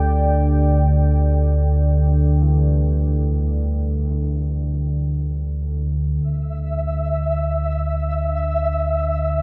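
A deep, rumbling drone sits up front from 0.0 seconds to the end, its detuned, wave-folded tone ominous and dark, in this cavernous, desolate dark ambient fragment cut from a longer piece. Alongside it, a moody pad holds sustained chords until 6.2 seconds, its sawtooth and sub-octave layers thickened by chorus and ring modulation. Very quiet old church bells enter at 2.4 seconds with ringing, clangorous arpeggios, their bronze tone close-miked and dry, and they fade out over the passage. Toward the close, a flickering, grainy granular texture enters up front, sustaining to the finish. Each of the drone, pad and texture carries its own built-in reverb, and the whole sound is set in a wet cathedral space with a long tail.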